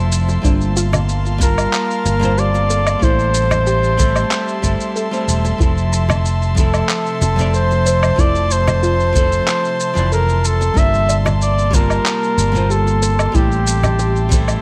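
A smooth, up-front flugelhorn with tape echo carries the melody from the very start of this blissful sunset chillout excerpt, joined by a dark, clean hollow-body archtop guitar, an airy breathy pad with chorus, soft round pluck arpeggios tucked in the background, and a prominent fretless electric bass, while gritty sampler-style shaker, woodblock and handclaps, close, dry bongos and congas, and a deep analog kick drum settle into a straight 4/4 pulse beneath chords moving through Gm11, Am7 and Fmaj7 in a light digital ambience.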